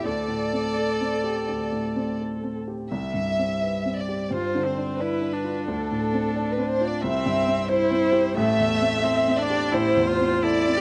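Close, intimate and touched by light reverb, this tender, hopeful neoclassical piece for piano and strings moves in rubato 4/4 at 83-90 BPM in C major, with a sul tasto chamber violin section of soft attack and light vibrato carrying the melody while a clear, smooth single viola and a warm grand piano with audible action noise accompany up front, all three parts colored by slapback echo over chords that pass from D7sus4 through Cmaj7 and G7sus4 to Am7.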